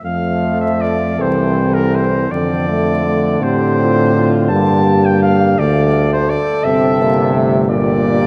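A serene, lyrical brass band piece in a hymn-like classical style begins at once, heard as a fragment cut from something longer. A flugelhorn carries the melody with light vibrato, its tone clear yet distant and roomy, while a mellow French horn section with a soft attack sings a second line in the background. Beneath them, a euphonium with vibrato adds a vintage-tinged accompaniment, a trombone joins it in the background at 0.1 seconds, and an up-front tuba anchors the bass. The music sways in 6/8 with uneven beats and rubato, and the harmony settles on major chords before turning toward minor ones. A dark production bathes the band in a long church reverb, and vinyl crackle lends the whole recording an aged patina.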